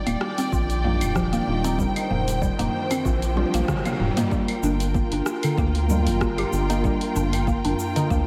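At 95 BPM in 4/4 with a light 16th-note swing, this meditative, earthy organic downtempo excerpt sets a deep, tape-warm house kit of cabasa, claves, hi-hat, rim click and toms and a layered electronic kick beside a high-tuned, ringing tabla in the background, under a round, up-front analog bass, a woody mallet-like synth pluck playing arpeggios through phaser, lush chorus and diffuse delay with a filter sweep until 4.3 seconds, muted felt-like keys accompanying and a dark, bowed string section sustaining Ebmaj7 chords, both with sidechain pumping, and a background riser from 1.9 seconds that leads with a drum fill and band accent into the second section, all set in a dreamy, reverb-soaked hall.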